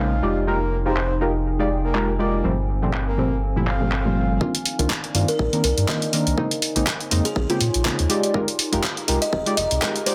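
A mellow chord stab under a filter sweep, a round, dark analog bass, a warbling lo-fi pad in the background and a breathy, flute-like synth lead open this 122 BPM deep house excerpt in C minor over Fm11 and Gm11 chords, with pumping on the stab, bass and pad, before the up-front drum kit with handclaps and hi-hat joins at 1.0 s, a background swell leads into a deep electronic kick at 4.4 s, and a buzzing, woody kalimba enters at 5.3 s over a build-up through Cm11, Bbm11 and Fm11 chords.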